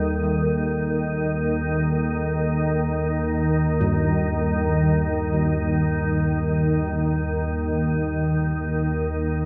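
Dark ambient drone in free time, cavernous and ominous, this short excerpt rests on a G minor chord and is tuned slightly below standard pitch, at A4 = 439 Hz. Up front, a calm, detuned organ-like drone sustains with a slow attack and long release, thickened by ensemble chorus and its own reverb. Very quietly beneath it, bronze gamelan-type bossed gongs play beating, metallic arpeggios while a pure quartz singing bowl rings softly, all soaked in a cathedral reverb of 6.5 seconds that gives the mix a dreamy haze.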